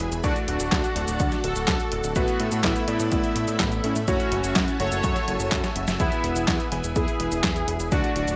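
A sunny, romantic Italo disco passage at 125 BPM in a straight 4/4 opens at once with a bold, brassy analog synth lead carrying the melody, colored by chorus, cassette tape grit and digital delay. Beneath it a lush string machine holds sustained chords in the background, while a bright electric grand piano adds clangy, vintage stabs and a fat, detuned sawtooth bass with a filter sweep anchors the low end. A detuned 8-bit drum machine, overdriven and up front, supplies snare, hi-hat, handclaps and cabasa, and a punchy electronic kick joins at 0.2 seconds and drops out at 8.0 seconds. The harmony moves through D, Asus2, F#m7 and E, with a drum fill around 5.5 seconds leading into the final chord. A moderate plate reverb and bright 1980s-style digital production give this short cut from a longer piece its polished, radiant sheen.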